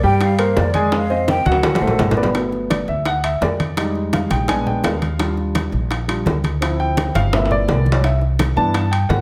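Lively and sunny, this Afro-Cuban jazz passage, cut from a longer piece, opens with a breathy, hollow flute melody with vibrato and a distant placement that ends at 2.2 seconds, over a natural-sounding grand piano and a woody, dark pizzicato upright bass, both up front. From 2.3 seconds the piano takes a solo across rich jazz harmonies such as Gmaj9, Bb7b9 and a closing Cmaj9, while damped, low-tuned congas and round bongos sit in the background beside ringing metal-shell timbales with a vintage, band-limited tone. Two drum fills appear along the way, all in a moderate large-studio reverb.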